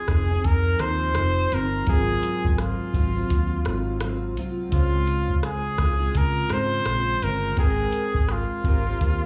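Mellow and wistful, this short indie bedroom pop excerpt in a lightly swung 4/4 sets a clear, up-front trumpet melody with vibrato and a smooth top, touched by subtle chorus, slapback and tape echo, over fingerpicked plugged-in jumbo steel-string acoustic guitar with fresh strings, lush chorus and a vibrato effect. A reedy, worn, slightly out-of-tune electric piano sits in the background through its built-in speakers, while a dark, round, foam-muted vintage electric bass and a soft analog rhythm box with a deep kick, metallic hi-hat and rim click come in at 0.1 seconds. The chords move from Fm7 through Ab13 and Dbmaj7 to Abmaj9, and the recording sounds like a live club gig heard through the venue's PA with light reverb.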